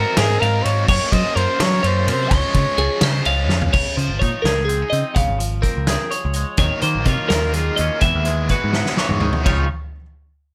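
A breathy, whispered trumpet opens this playful, wistful math rock and midwest emo excerpt in 6/8 at 84 BPM in Db major, carrying a brief delayed melody over bright, phaser-tinted twelve-string arpeggios, an up-front picked electric bass and a biting overdriven guitar riff with tremolo sitting in the background, while a roomy indie drum kit with a fat snare and dark cymbals adds fills and a clean, scooped twangy guitar joins at 3.7 s as the harmony drifts through lush ninth chords.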